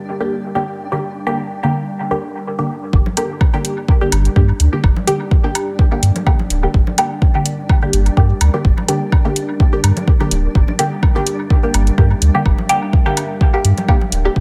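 Dub techno at 126 BPM in G dorian, hypnotic and cavernous, this excerpt sits in an echo-heavy mix with light reverb and digital ambience, its 16ths carrying a slight swing. It opens on a Gm chord, with a deep, moody ambient pad holding sustained chords in the background, detuned sawtooth layers with a sub octave, chorus and built-in reverb, pumping from the sidechain. Up front, a muted, filtered dub chord stab plucks short, detuned sawtooth and pulse-wave stabs through a phaser and dub echo, also pumping, while a very quiet grainy, flickering texture hovers on D4. At 2.9 seconds a clean, smooth pure sine sub bass and a deep, tape-tinged electronic kick with small room ambience arrive up front, the bass ducking to the sidechain. Layered congas and woodblock with dub echo follow at 3.1 seconds, and a metallic electronic hi-hat joins at 3.2 seconds, rounding out the steady groove.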